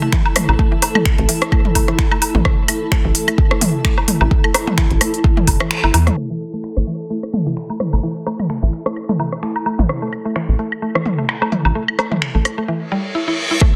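A rubbery, hollow square-wave bass sits up front and bounces under sidechain pumping from 0.5 seconds, driving this hypnotic, sparse minimal techno cut from a longer piece. Around it, a woody, round mallet-like synth pluck repeats a riff through chorus and delay, while a cloudy granular pad with a slow attack and long release drifts in its own reverb and pumps along with the bass. A deep electronic kick and a layered techno kit of rim clicks, toms and woodblock with tape echo keep a swung 4/4 pulse, joined by a minimal click kit of finger snaps and clicky hi-hats, both kits with soft clipping on the snare. The kick drops out at 5.7 seconds on a band accent, and from 6.2 seconds a filter sweep runs over the synth arpeggio sound for the second half. A reverse cymbal swells in at 12.9 seconds ahead of the kick's brief return, all under a dense, heavily limited master with light reverb.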